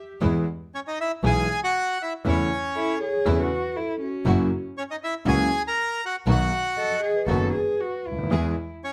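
Sultry and dramatic, this rubato tango fragment sets a reedy, bright bandoneon melody up front, coloured by slapback echo and plate reverb, over an intimate concert grand piano with audible action noise and deep bass, a clear bowed double bass with vibrato, earthy chamber string stabs and a soft-attack sul tasto cello second line, joined at 2.8 s by a mellow, ringing vibraphone played with soft mallets, captured with close, detailed microphones and light reverb.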